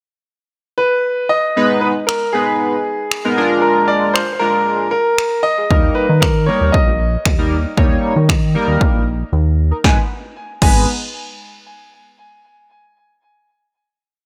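With light reverb and every part up front, this complete dance-pop piece in G# harmonic minor moves at 116 BPM with a bittersweet, driving mood: a clear, intimate concert grand piano with audible action noise and delay states a call-phrase motif, a glossy, retro chorused polysynth adds syncopated drop-2 chords with sidechain pumping, a punchy analog drum machine with a tape-warm tone sets a four-on-the-floor beat with finger snaps and crashes from 2.1 s, and a mellow chorused synth bass with a filter pluck plays a syncopated figure from 5.7 s until a brief silent gap at 9.3 s gives way to a final G#m chord.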